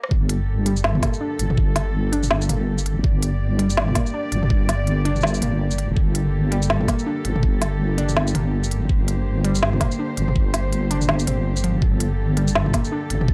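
A deep, wobbling sawtooth-and-sine bass anchors this dark, spacious half-time drum and bass drop at 164 BPM in G minor, cut from a longer piece, where a knocking, up-front electronic kick and an organic electronic kit of woody snare, crisp hi-hats, rim clicks, shaker and toms swing under intimate sul tasto cello chords with sidechain pumping, while a warbly, dusty, detuned pluck spins lo-fi arpeggios through chorus, phaser and analog delay, all held on a Gmadd9 chord in a dry, gritty recording with transformer saturation.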